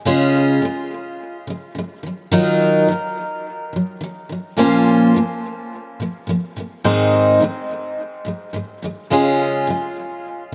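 Easy-going and sunny, this short pop passage, cut from a longer piece, moves at a relaxed, straight pulse in four. A picked steel-string acoustic guitar carries everything alone, sitting up front with the bright, full-bodied ring of a dreadnought strung with fresh strings. Its part spans from Ab2 up to C5 and runs from 0.1 to 10.5 seconds, passing through Db, Ebmadd9, Bbmadd9 and Ab before settling back on Db at 9.1 seconds. A dub echo trails the guitar's notes, and the whole mix leans heavily on echo. A wet spring reverb with a long tail surrounds the playing, giving the sound a splashy, spacious halo.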